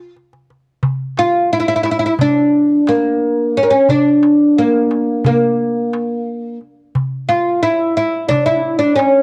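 A bright, woody fretless oud opens this longing, melancholic excerpt in a Turkish makam ensemble, carrying the melody up front in a straight 9/8 at 177 BPM, and a crisp, dry darbuka with a metal shell enters at 0.2 seconds. A mellow, soft-edged clarinet sits in the background as a second line, briefly sounding at the start and returning at 7.3 seconds. Oud and clarinet both carry a cassette-tape colour, and the home recording on cassette sits in moderate studio reverb.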